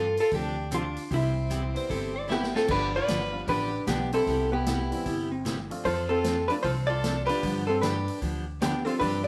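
Western swing country at 152 BPM, cheerful and swinging, cut from a longer piece and bathed in moderate spring reverb over G7, Cmaj7 and F6 harmony. An up-front, dark, compressed hollow-body jazz guitar carries the melody with slapback echo, while a clear, focused bowed fiddle with light vibrato plays a second line and a bright, full-bodied jumbo acoustic guitar is picked underneath. A thumpy gut-string upright bass played pizzicato, a natural studio-room drum kit with a punchy kick and a fill at 2.3 s, a short-sustain upright piano in the background, and brief clean fingerpicked lap steel slide phrases at 1.8 s and 5.1 s round out the band.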